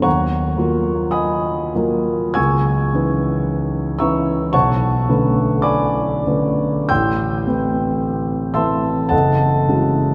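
Bathed in a cathedral's long, echoing reverb, this short excerpt from a longer impressionist classical piece has a serene, hazy air. A single smooth, vintage-toned grand piano sits up front and plays alone for the full 10.1 seconds, ranging from Gb1 to Ab6 at a slow, rubato 45-58 BPM in 4/4. Its harmony drifts through a chain of minor ninth chords, Ebm9, Dbm9, Cbm9, Am9 and Gbm9.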